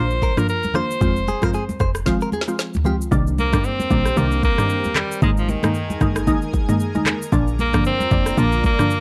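A dry, gritty cassette-tape sound colors this hypnotic, sultry afrobeats excerpt in C minor at 114 BPM, with swung sixteenths driven by an overdriven, up-front electronic drum kit (deep kick, woody snare, handclaps, rim clicks, shaker and toms), soft-handed congas in the background and a punchy, percussive log drum bass. An edgy alto saxophone leads up front through analog delay over a glassy, crystalline wavetable pluck with chorus, while a bright, direct-recorded clean electric guitar plays a picked riff with analog delay until 3.0 s. After a drum fill from 2.1 s, a soft, breathy pad enters in the background at 3.3 s as the chords move through Cm7 and Absus2 to Bb.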